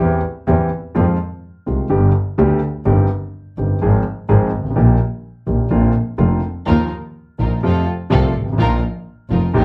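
Dramatic and tense, this rubato tango fragment in Eb major at 126 BPM pairs a deep, short-sustained concert grand piano accompaniment with an earthy, bowed double bass carrying light vibrato, both up front, and a dark studio string section joins them at 6.7 s with soft-attack, sul tasto stabs, all set in a moderate club reverb heard from further back in the room.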